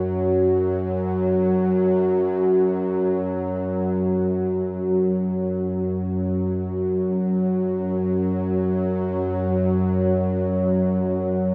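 Ambient and in free time, this ominous, dark excerpt sets a lone bowed-like drone up front from 0.0 to 11.5 seconds, its tense, sawtooth-edged string tone blending unison layers, a noise layer and vibrato, swelling in with a slow attack into long sustains and a long release across F#2 to F#3, while its built-in reverb and delay and a huge 8.8-second reverb soak the dreamy, dulled mix as it moves into a second section at 4.1 seconds.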